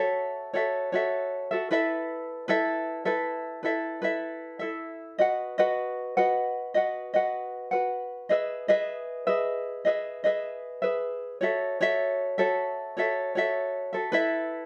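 A bright, light tenor ukulele plays alone and up front, fingerpicked through a carefree, easy-going pop passage in straight 4/4 that is cut from a longer piece. Its acoustic tone sits in a moderate studio reverb within a dark, warm production, moving through F#m7, Asus2, B and Emaj7 before circling back to F#m7 and Asus2 near 14.1 seconds.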